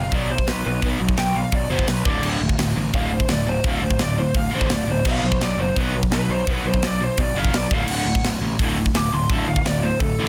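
Rowdy, upbeat punk rock, cut from a longer piece, where a lo-fi overdriven lead guitar solos throughout over two bright distorted guitar riffs (one very quiet, one in the background), a growly fuzz bass and a tight, up-front drum kit with bright cymbals, all in a dry, dense, heavily limited modern mix.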